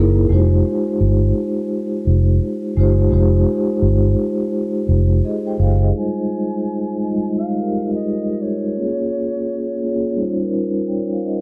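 A swung 16th-note 4/4 groove at 85 BPM drives this reflective, melancholic lo-fi hip hop piece in F minor, where a mellow, ringing soft-mallet vibraphone with fast motor vibrato sits up front across Fm9, Bbm7 and Eb13 chords through 11.4 seconds, a round, punchy foam-muted electric bass anchors the low end until 5.9 seconds, and an airy, distant jazz flute with a crisp chiff and analog delay takes the melody from 6.0 seconds as a filter sweep colors the dark, lightly reverberant mix.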